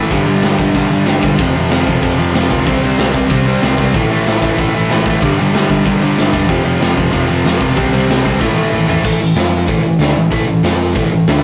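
A sludgy, overdriven guitar charges in up front with a bright, tightly distorted second guitar tucked behind it and a dark, round hollow-body bass underneath, as a big-room rock kit with a punchy kick and bright cymbals joins almost at once in this angry, raw punk rock fragment at 188 BPM in A minor. The riff cycles through G5, F5, C5 and A5 power chords until a drum fill at 8.4 seconds, after which the background guitar stops at 9.0 seconds and the sludgy guitar, bass and drums push through a shorter F5–A5 passage to the cut at 11.4 seconds. Light reverb gives it the loud, rough feel of a rehearsal-room take.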